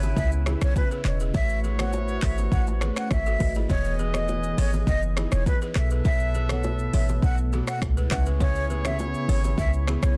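Romantic and joyful, this afrobeats excerpt at 102 BPM in E major sets a breathy, tongued silver concert flute melody with delay and plate reverb over a mellow tine electric piano, a smooth-topped horn section with light vibrato, a faint glassy FM pad, a woody balafon riff buzzing in the background, very quiet bongos and congas, a punchy short 808-style bass and an up-front electronic drum kit of deep kick, metallic hi-hats, snaps, handclaps, rim clicks and shaker, all moving through C#m7, A69, Emaj7 and B7sus4 chords.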